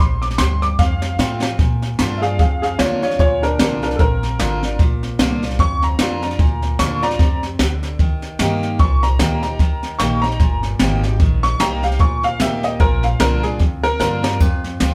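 Recorded as a band playing live in one room with light reverb, this rollicking, upbeat rockabilly cut, taken from a longer piece, swings its eighth notes at 150 BPM in 4/4 in Bb mixolydian, tuned slightly sharp to A4 = 443 Hz. A worn, slightly detuned upright piano sits up front carrying the melody, and from 1.6 seconds it takes a solo that rides over the Bb, Eb and F changes. Beneath it, a full-bodied jumbo steel-string acoustic guitar picks out the accompaniment, while a pizzicato upright bass on gut strings gives a dark, thumpy, woody low end. The jazz drum kit, played with brushes and also placed up front, enters at 0.2 seconds with a high-tuned snare, a boomy kick, hi-hat and a dark splash cymbal. Short drum fills mark the move into the solo at 0.8 seconds and return near the close at 14.0 seconds.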